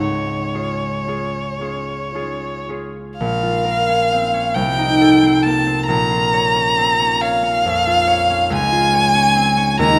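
A wet scoring-stage reverb with a decay of about 1.7 seconds surrounds this excerpt, cut from a longer romantic classical piece for violin and harp. The mood is warm and lyrical, moving in a slow, rubato 6/8 at roughly 37 to 47 dotted-quarter beats per minute. A single rich violin, bowed with vibrato and placed up front, carries the focused melody between Db5 and Bb5. Beneath it, a bright concert harp, fingerpicked and ringing, supplies the accompaniment from a low Bb1 up to Db5, also heard up front. The music opens in Db major, turns toward Bb minor at 3.2 seconds with a passing Adim/C chord, and returns to Db at 8.5 seconds.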